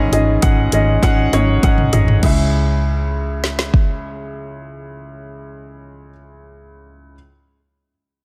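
This earnest, dramatic piano-driven pop excerpt opens with a clear, natural upright piano up front and a round, foam-muted vintage electric bass beneath it, with the harmony moving from G#sus4 to C#m at 2.2 seconds. A layered electronic deep house kit, with a deep kick, woody snare, dark hats, crash and toms, plays a fill from 1.0 seconds and drops out at 3.9 seconds. Light reverb and digital ambience surround a dense, heavily limited modern master.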